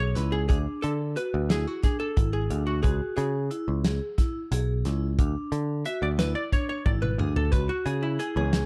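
A hollow-body archtop guitar, dark and clean, carries a picked solo melody with slapback echo over ringing vibraphone arpeggios, a bright, growly picked bass, and a fat-snared soul drum kit that enters at 0.2 seconds and drops a fill around 6.9 seconds, while a clear grand piano slips in only at 8.4 seconds in this tense, brooding 7/8 progressive instrumental with a dark, warm small-room sound.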